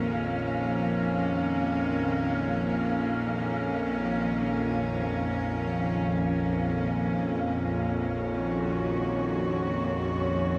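Floating in free time, this desolate, ominous dark ambient drone is a brief portion cut from a longer piece, with all three parts sounding together from 0.0 to 10.6 seconds. A chamber cello section sits up front, holding sustained chords with a soft attack, light vibrato and a hushed sul tasto tone that feels intimate and close. Beneath it, a tense, string-like bowed drone growls in the low register, its sawtooth and wave-folded edges blurred by a slow attack, long release, vibrato and its own reverb. High above, an airy, breathy, wind-like noise texture hovers faintly, dark and sustained. The harmony rests on a minor chord until shifting at 7.8 seconds, and a cathedral reverb with a 5.1-second tail bathes the whole scene in a cavernous, lingering gloom.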